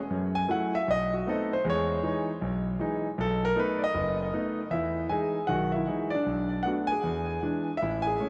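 This is solo jazz, a relaxed, swinging piece at 156 BPM in 4/4 and E major, with a 64% swing on the eighth notes and tuning set to A4 = 442 Hz. A concert grand piano carries the whole performance, entering at 0.1 seconds and sounding natural and up front, with a deep bass that reaches down to F#1 and a reach up to G#5. The harmony opens on F#m7 and B7b9 before settling on Emaj7, and after a new passage begins at 4.7 seconds it moves through Bm7 to E7. A diffuse ambient delay trails behind the piano, while a plate reverb with a 2.8-second tail soaks the mix and lends it a dreamy haze. Cut from a longer piece, it ends at 8.3 seconds.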